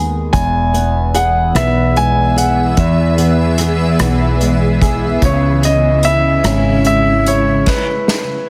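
Heavily compressed, radio-style sound with concert hall reverb frames this swaying, romantic six-eight pop ballad in E major at 49 BPM, where a polished, intimate grand piano with audible action noise and tape echo carries the melody over double-tracked fingerpicked nylon-string guitar, a round, woody fretless electric bass up front, a bright, cloudy granular pad entering at 1.5 s, and an acoustic kit played with bundle sticks under dark cymbals, moving from E to C#m before a stop and drum fill at 7.7 s.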